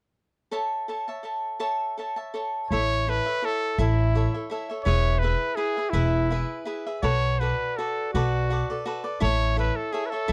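A rubato feel in 3/4 at 166 BPM sets the pace for this romantic, festive mariachi-style Mexican folk excerpt in A major, cut from a longer piece. A picked acoustic cavaquinho opens alone at 0.5 seconds, crisp and up front, carrying the accompaniment through an A chord. At 2.7 seconds a clear trumpet enters with the solo melody in a classical style, its soft attack and light vibrato placed prominently in the mix. An upright bass arrives at the same moment, played pizzicato with a woody, growly, thumpy tone from its steel strings, sitting low and dark beneath the other two. The harmony moves from A to E, then Bm7, and returns to A near the close, all captured in a dry, close 1970s-style studio sound with little reverb.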